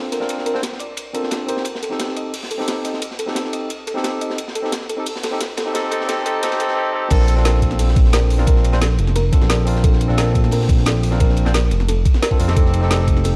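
Two layered drum kits carry a straight 4/4 pulse at 176 BPM from the opening seconds. This is a liquid drum and bass fragment in Bb major with a warm, uplifting mood. One kit is a crunchy, gritty breakbeat kit, with dark cymbals, a medium-tuned snare and a rolled-off top, sitting in a studio-room reverb. The other is overdriven, with a woody snare, bright hats and crash cymbal. Over them, a bright, barky tine electric piano plays chords from Bbmaj7 to Cm6 through a low-pass filter and dub echo. A round, FM thumb-piano-like pluck with chorus and delay spins arpeggios in the background. Both pass through a filter sweep during the build-up. The drop lands at 7.1 seconds: a knocking, overdriven electronic kick and a smooth, gliding sawtooth-and-square synth bass enter up front, and the harmony moves to F9 before the fragment ends at 13.4 seconds. The production is dark and warm, with a small-room ambience and a faint mains hum underneath.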